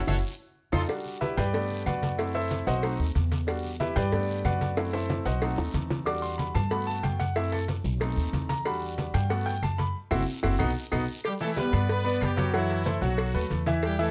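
Driving and passionate, this salsa excerpt in E minor moves at a brisk 186 BPM in a straight 4/4, cut from a longer piece. A bright baby grand piano sits up front throughout, its polished, intimate tone carrying audible action noise and short sustain as it takes a solo from 0.9 to 11.2 seconds over a cycling Em7, Gmaj7, F#m7b5 and B7b9 progression. Beneath it, a thumpy upright bass with gut strings plays pizzicato, woody and dark, while congas with a thick, low-tuned skin, tight high-tuned bongos and cowbell, raspy guiro and grainy maracas sit in the background, joined by very quiet, woody claves. A punchy trumpet section with light vibrato joins the opening band accent, and a drum fill and second band accent lead into a brilliant, close-miked horn section that enters up front at 11.2 seconds. Light reverb and close, detailed microphones keep the sound present and crisp.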